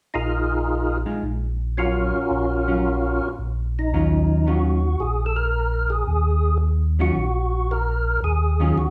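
Jazz in Eb minor at 112 BPM with a swung feel, smoky and late-night in mood, cut from a longer piece. A percussive tonewheel organ carries the melody with fat, key-clicking tone, light overdrive, chorus vibrato and slow rotary speaker, while a second, mellow and round tonewheel organ holds down the bass with the same rotary and vibrato treatment, both sitting up front. A dark, clean hollow-body electric guitar enters at 1.1 seconds with picked accompaniment over chords moving from Bb7sus4 to Ebm9, all set in a wet large-studio reverb heard from further back in the room.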